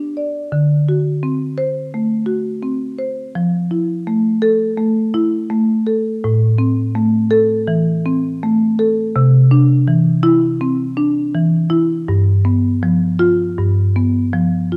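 In a flowing, rubato 4/4 at about 82 BPM, this playful contemporary classical piece for solo marimba with medium mallets, cut from a longer piece, moves through D7, Fmaj7, Am, Cadd9 and G7 in C major, its woody, dark, smooth tone sitting up front under close, detailed microphones within a moderate recital hall reverb.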